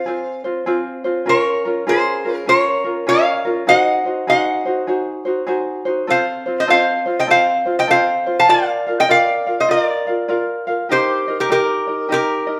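Swung eighths in 4/4 at 100 BPM carry this languid, sunny Hawaiian passage in Ab major, where a bright, metallic, nasal lap resonator guitar played with fingerpicks and slide sings the melody up front over a light, fingerpicked tenor ukulele accompaniment, both acoustic and captured as a band playing live in one room bathed in a wet large-studio reverb.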